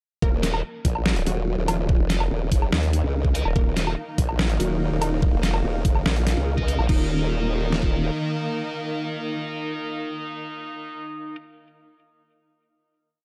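A half-time 4/4 groove at 144 BPM drives this aggressive, heavy dubstep piece in Eb minor, built on two overdriven electronic drum kits up front: one pairs a knocking kick with a deep snare, and the other adds bright closed hats, a low woodblock, snare and crash. Two formant-sweep wobble basses churn through modulated phrases with changing wobble speed, one a saturated pulse-and-sine tone and the other sawtooth-based, both with chorus, the second answering the first. Above them a detuned, wave-folded unison pluck repeats a riff in octaves with delay, while a scooped, high-gain electric guitar fires sparse echoing power-chord stabs. A blurred granular cloud pad with slowly shifting chords drifts in at 1.5 s, and huge supersaw chords join at 3.6 s, both pumping with sidechain in the background. The drop gives way at 6.9 s to a final chord, all within a dark production with light reverb.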